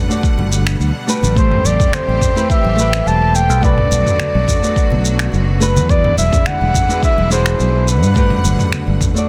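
Sunset chillout with a wistful, smooth mood, built on a deep layered electronic kick, a deep house kit of finger snaps, shaker and toms with softly clipped snare, very quiet hard-handed congas and an up-front fingered electric bass. A fingerpicked flamenco guitar with audible finger squeak and digital delay plays accompaniment alongside clear, lightly vibrato symphonic strings holding sustained chords, while a mellow solo flugelhorn with delay carries the melody from 1.1 seconds. The chords move from Gmaj7 through Am7, Bm7 and E7 back to Gmaj7 in light studio reverb, with a dense, heavily limited modern master on this short cut from a longer piece.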